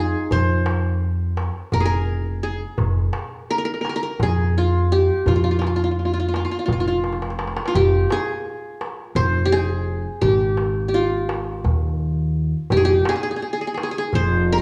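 A bright-edged, plectrum-plucked qanun carries the melody up front in this longing, hypnotic Turkish makam excerpt in 7/8, its triple strings ringing over a woody pizzicato upright bass, also up front, that grounds the low end. A crisp metal-shell darbuka played with soft hands joins at 0.3 seconds and delivers a fill from 7.0 to 7.8 seconds that leads the piece into its second section. The sound sits in a moderate recital hall reverb and has the worn, warbly pitch drift of old cassette tape.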